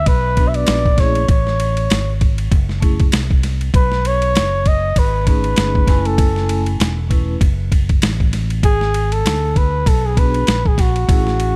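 A breathy flugelhorn and a round, amped electric bass open this smoky, mellow jazz-hop excerpt together, with the sampler-style boom bap kit arriving at 0.1 seconds and the vibraphone at 0.3 seconds. The tempo sits at 98 BPM in 4/4, with a light swing on the sixteenths. Up front in the mix, the flugelhorn carries a jazz-style solo melody with vibrato, scooped notes and a smooth top, its lines trailed by tape echo. The drums are compressed, pitched down and gritty, built from a thumpy kick, a high-tuned snare, hi-hat and ride cymbal. Underneath, the dark fingered bass holds the low end, while the vibraphone, played with medium mallets, adds a quieter metallic, ringing shimmer with slow motor vibrato. The chords move from G#m7b5 through F#m, B13 and F#m7 to G#dim, and the whole passage sounds dry and close, with little reverb.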